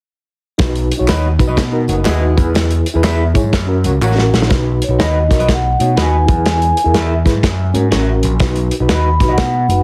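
A mellow vibraphone played with soft mallets carries the melody from 4.8 seconds, its metallic, ringing tone heard close and dry with a touch of analog delay. This joyful, danceable stretch of uptempo 1960s-style soul moves at 123 BPM in 4/4 with a swung feel, cut from a longer piece and cycling through B, E and F# chords in B major. Up front, an overdriven picked electric bass sounds dark, round and punchy alongside a tight acoustic soul drum kit with a medium-tuned snare and a rolled-off top, which plays a fill just before the second section. A reedy, worn and slightly out-of-tune electric piano pulses with fast tremolo through its built-in speakers, while a bright, twangy electric guitar through a small old amp adds slightly broken-up stabs with analog delay. A distant, roomy horn section doubled in octaves plays a dark second line with light vibrato from 1.9 to 4.5 seconds. Very quiet high-tuned congas sound close and dry, joined by tambourine and handclaps in the background that drop out after the first section. 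Light reverb and heavily compressed radio-style sound give the whole track a dense, loud finish.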